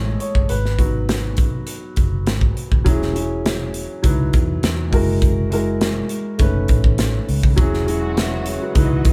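Bittersweet and smooth, this short cut from a lush 1970s-style soul piece moves at an unhurried 102 BPM in a straight 4/4. A concert grand piano sits up front with a boxy, deep-bottomed tone and long sustain, taking a solo over the opening 2.9 seconds on a rootless F#m7 voicing and then G#m7 before the harmony settles onto E6/9. A foam-muted fingered electric bass gives a dark, round, amped foundation, while an airy, polished acoustic drum kit plays hi-hat, punchy kick and a medium-tuned snare close in the mix. The progression drifts through C#m11, F#9 and B9 over F#, and at 7.6 seconds a bowed string ensemble arrives low in the blend with expressive vibrato and a silky top as the music returns to E6/9. Light reverb gives the feel of a band playing together in one room.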